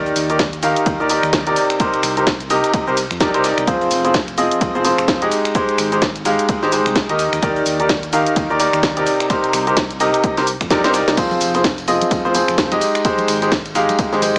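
A clear, up-front grand piano drives this uplifting, euphoric piano house excerpt with a riff that pumps against the sidechain and trails off in dub echoes, moving through Ebmaj7, Cm7, Fm and Abmaj7 over a swung 4/4 groove. Beneath it sit a dark, round overdriven fingered electric bass that also pumps, a punchy, tape-warm electronic kick, a layered garage kit with a cracking snare, cabasa, finger snaps, hi-hat and crash, and a very quiet, gritty breakbeat kit of ride and snare. After a drum fill, tambourine and congas with hard hands join in the background at 11.2 seconds, all set in light reverb with a small-speaker sound.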